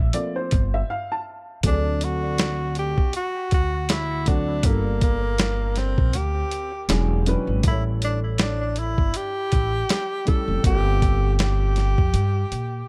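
This smoky, cool jazz-hop excerpt opens on a dark, worn upright piano with audible action noise and a slightly detuned, vintage character, joined from the start by a woody pizzicato upright bass on steel strings and, a moment later, a gritty boom bap sampler-style kit. The drums sit up front, compressed and pitched down, with a thumpy kick, a medium-tuned snare and hi-hat, all carrying a tape-warm, swung sixteenth-note feel. After a short break between 0.9 and 1.6 seconds, a breathy tenor saxophone takes the lead at 1.7 seconds, playing in a jazz style with subtone, scooped notes and light vibrato, its line trailed by analog delay. Beneath it, the mellow, intimate piano comps with long sustain over a minor-eleventh and dominant-seventh progression, while the bass stays prominent in the low register. The dry, echo-heavy mix has little room sound, and another break near the end at 12.1 seconds hints that this is cut from a longer piece.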